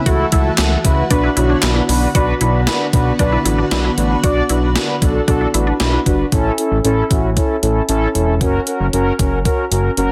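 Synth-pop in B minor at 115 BPM, this driving, nocturnal passage is cut from a longer piece and rides a straight 4/4 pulse from a gated 80s digital drum machine whose thumpy kick, hi-hat, handclaps and gated-reverb snare sit up front with a tape-warm, small-room character. A fat analog bass, thick and detuned with a sawtooth filter pluck, holds the low end from E1 to C#2 alongside a mellow synth brass that plays round, dark, chorused accompaniment between C#4 and D5. In the background, a vintage organ-like ensemble string pads sustained chords with soft attack and ensemble chorus, while a juicy, squelchy resonant blip pluck traces arpeggios through chorus and tape echo. Both background parts drop away by 6.3 s, leaving drums, bass and brass to carry the harmony from Bm to A and then F#. The light reverb and dense, heavily limited modern master keep the sound compact and forceful.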